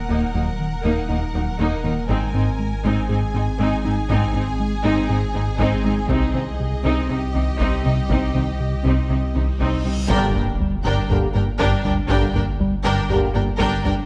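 This brooding, vast cinematic cue, cut from a longer hybrid orchestral and electronic film score, opens on a saturated, thick sub bass and smooth symphonic violins carrying a lightly vibrato second line. Clear, focused violas, a rich cello section and a round, nasal analog bass riff join them, while a tine-like, warbling FM synth pluck spins arpeggios through chorus and digital delay in the background. At a straight 120 BPM in 4/4 and G phrygian, the harmony moves from Ebm through Ab and Cm. Hard-stick taiko drums enter at 2.1 seconds, sitting back in the mix. A huge, dark reverse cymbal rises at 9.7 seconds into an impact and band accent at 10.1 seconds, when the chord turns to Gm and expressive studio violins take the melody on a high G with soft-attack portamento. Bright trombones and mellow, distant French horns add sustained chords there, and a very quiet chamber double bass section anchors the low end, all held in a moderate scoring-stage reverb.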